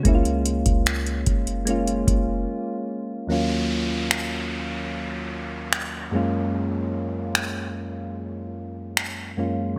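Smooth, romantic contemporary R&B in a short cut from a longer piece, built on mellow, round electric-piano-like synth keys with chorus and a filter sweep, moving from F#maj7 to D#m9 and back. A booming, overdriven analog drum machine with gated reverb sits up front, playing deep kick, metallic hi-hats and finger snaps, while a clean, sine-like 808-style bass adds dark low end until 2.5 s. After a brief break, an electronic downlifter enters at 3.3 s, all set in a lush hall reverb with bright 1980s-style digital production.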